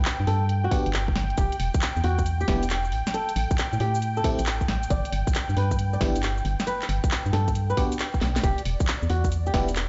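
Bouncy and soulful, this short cut from a longer two-step UK garage piece moves at 136 BPM in E minor with a 16th-note swing of 67%, its chords passing through Em, A7(no3), G and Em7. A hollow, organ-like FM bass sits up front with a dark, percussive bite, alongside a tight, tape-warm electronic kick. The garage drum kit layers handclaps, shaker, warm hats and a cracking snare, re-recorded in a small room, with a drum fill at 8.2 seconds. A fingerpicked flamenco guitar carries the melody through tape echo, while a glassy FM electric piano adds bell-like stabs treated with chorus, phaser and echo. Underneath, a smooth, detuned sawtooth pad holds sustained chords with chorus and sidechain pumping, and the whole mix sounds as if played on a big system in a bare stone room, dark at the top and lightly reverberant.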